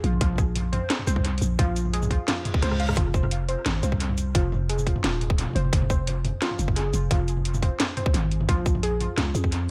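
A half-time drum and bass groove in 4/4 sets a dark, heavy mood, driven by a tight, up-front electronic kick and a layered kit of cracking snare, metallic hats, rim click, shaker and toms, with dub echo on the kit. A growling, buzzy 808-style bass sits up front beneath a warbly, dusty lo-fi pluck that plays detuned arpeggios through chorus, dub echo and a filter sweep. An electronic reverse cymbal enters at 2.4 seconds, joined by a drum fill at 2.6 seconds, before the harmony moves to F minor at 3.0 seconds, all inside an echo-heavy digital ambience in this section cut from a longer piece.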